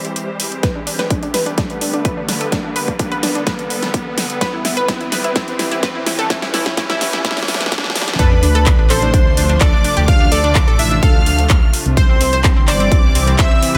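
Set in a light, digital reverb with a high-pass filter on the mix, this dreamy, expansive progressive house excerpt moves at 127 BPM in 4/4 with a straight feel in D dorian. An evolving wavetable pad holds morphing, detuned chords in the background under a round analog pluck playing arpeggios with chorus and dub echo. Both are sidechain pumped and filter swept through a build-up. A big-room dance kit brings a huge snare, metallic hats and handclaps, while a background riser and sub drop add tension. A punchy electronic kick enters up front at 0.6 seconds, with a drum fill running into the drop. At 8.2 seconds the drop lands with an impact, as a catchy, full-bodied unison lead carries the melody with dub echo. A biting, close studio violin section with light vibrato plays a second line in the background, and a dark, rumbling detuned saw bass follows, all pumping against the kick over chords that settle from Dm7 back to C.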